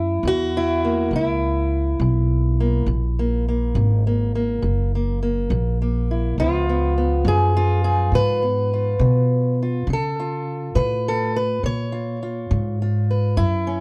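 Acoustic country blues in a gritty, laid-back mood, this short excerpt moves at a slow 69 beats per minute in a straight 12/8, with the tuning set a little sharp of standard pitch. A fingerpicked steel-string acoustic guitar carries the melody from the start, its boxy parlour tone sitting up front and ranging from F#2 up to C#5. An upright bass plays pizzicato beneath it throughout, woody, growly and thumpy on steel strings, and it sits slightly louder in the mix than the guitar. The harmony rests on F#7 before shifting to C#7 at 6.4 seconds, and both instruments play together for the full 13.8 seconds. Light reverb and a dark, warm production frame the duo.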